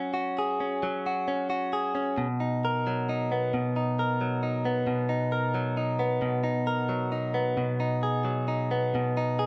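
A wet small-room ambience frames this short cut from a longer romantic pop piece, swaying in 6/8 at 44 BPM in B major. A bright, clean electric guitar, picked, compressed and recorded direct, sits up front and carries the whole 9.5 seconds alone, ranging from B2 to A#4. It opens on F#sus2, settles into Bmaj7 at 2.2 seconds, and moves to G#m7/B at 7.6 seconds.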